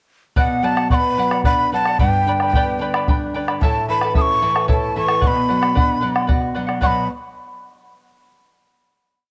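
From 0.4 seconds, a breathy, bright wooden quena plays a wistful, tongued melody built on short motifs, with vibrato and an unsteady edge, up front over a fingerpicked, shimmering charango, a nylon-string guitar with bass notes, chord figures and an occasional finger squeak, and a deep, dark bombo in an evenly spread pattern. This earthy Andean folk piece moves in a straight 6/8 at 74 BPM in B minor, cycling through Bm, G and A. Recorded at home on cassette with light reverb, the tape colouring the quena, charango and guitar, the ensemble settles onto a final chord at 6.8 seconds.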